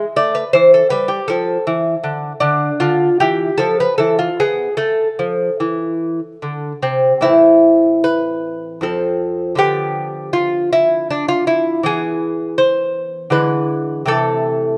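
In a flexible triple metre, the playing stretches and relaxes with rubato, giving this baroque-style classical dance an unhurried, breathing pulse. A solo lute carries the whole passage, fingerpicked on gut strings whose doubled courses, some tuned in octaves, lend the tone a shimmering fullness. The sound is bright yet delicate, captured by close, detailed microphones that place the instrument up front, with only light reverb around it. The mood is grave and introspective, and the short passage, cut from a longer piece, unfolds in two parts, the second beginning at 7.2 seconds and settling onto a final minor chord at 14.1 seconds.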